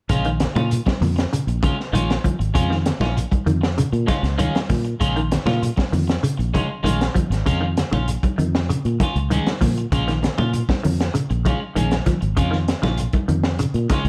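Light reverb gives this funky, hypnotic afrobeat excerpt at 98 BPM in Bb minor a close, small-room feel, with a gritty, saturated breakbeat kit (punchy kick, high-tuned snare, rolled-off top) and a round, foam-muted fingered bass sitting up front on a single Bbm7 groove. Behind them, a dark, clean semi-hollow guitar plays low arpeggios through an ensemble chorus, while a slightly broken-up picked electric guitar adds stabs bathed in lush chorus. Bright, hard-hand congas and a grainy, mellow shekere fill out the background from 0.1 to 14.1 seconds.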